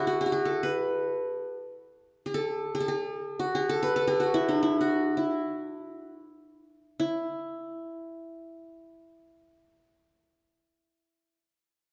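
Heard through a dark, warm production and the long, wet bloom of a recital hall, this cut from a longer Arabic piece unfolds in free time with a festive, passionate air. A lone acoustic qanun, played with fingerpicks, sits up front with a bright-edged, triple-string ring. The playing slows from 1.9 to 7.0 seconds, and a new passage begins at 7.0 seconds.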